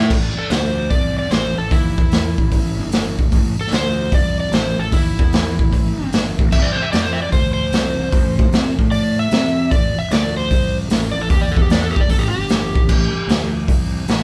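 A growly, fuzz-drenched fingered bass opens this smoky, heavy blues rock and southern rock power-trio excerpt at 150 BPM in A minor with a swung feel, joined at once by a boomy, gritty garage drum kit sitting up front in a small, pumping room, before an overdriven slide guitar takes the melody as a solo from 0.4 seconds, all caught live with light reverb over restless suspended chords and broken stops.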